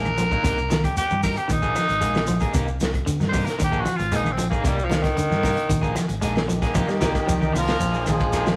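This rough rehearsal-room recording sits in a moderate stone room, giving a defiant, intense afrobeat groove in C minor at 114 BPM in a straight 4/4, cut from a longer piece. A raspy, up-front tenor saxophone leads with a vintage solo melody until 6.0 seconds, over a crunchy breakbeat drum kit with a punchy kick, dark cymbals and a saturated, rolled-off top. A round, dark hollow-body bass anchors the Cm7 to Bb7sus4 vamp, while two slightly broken-up, twangy electric guitars play picked arpeggios and stabs, the stabs carrying a warbly pitch drift. Grainy shekere, very quiet woody claves and damped, low-tuned congas fill out the percussion. At 6.5 seconds a mellow, distant horn section with octave doubling takes over the melody, joined by a clear trombone playing a second line with scooped notes and light vibrato.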